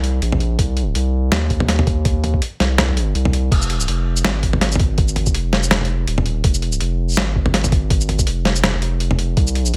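A saturated sub bass sits up front from the first moment, deep and thick with a sine-like body, a fast attack and sustained notes ranging from Eb1 to Eb2 in F minor. This cinematic, tense cut from a longer half-time drum and bass piece moves at 164 BPM in 4/4, with a 56% swing on the sixteenths giving the half-time feel a slight lilt. A boom bap sampler-style drum kit runs throughout, compressed and pitched down with a gritty, tape-warm character, its medium-tuned snare placed up front alongside hi-hat, shaker, toms and crash cymbal. An electronic kick drum joins at 0.6 seconds, delivering a thumpy, compressed thump in the same pitched-down, sampler-style vein until 9.5 seconds. Both drum parts carry studio reverb, while a digital ambience hangs around the whole mix, and the instruments are tuned slightly low to A4 = 435 Hz.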